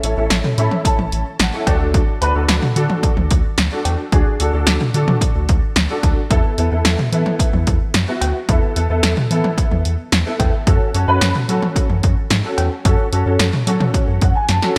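A steady, straight 4/4 pulse at 110 BPM comes from a punchy analog drum machine, with kick, snare, hi-hat, cowbell and toms sitting up front, tape-warm and re-recorded in a small room, plus a drum fill at 14.5 seconds. This wistful, nostalgic synth-pop excerpt rests on a round, deep sawtooth-and-sine analog bass with a fast attack, while a dark, mellow baby grand piano carries the accompaniment through an ensemble chorus and adds fills at 0.3 and 13.9 seconds. The harmony moves from Aadd9 through D and Esus4 to F#m, framed by light reverb and a bright 1980s-style digital sheen.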